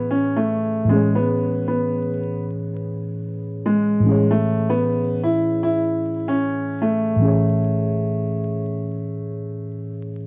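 Nostalgic and dreamy, this short hip hop excerpt with a lazy swing rests on a single lush Amaj9 chord. A dark, woody upright piano carries the mellow melody up front, while muted, felt-like synth keys with a warbling chorus and vintage softness fill out the accompaniment. Spring reverb, small-room ambience and vinyl crackle wrap the dusky production until the excerpt cuts off at 10.3 seconds.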